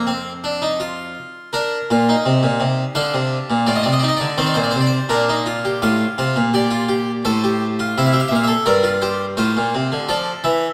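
A wet scoring-stage reverb surrounds a close-miked, up-front harpsichord whose plucked, full tone comes from a Flemish-style instrument with two sets of strings. This contemplative, solemn excerpt from a baroque-style three-voice fugue moves in a straight triple metre, the solo harpsichord spanning F2 to F5. The harmony travels from F through Bb, D minor and A minor to C7 before settling back on F at 10.1 seconds.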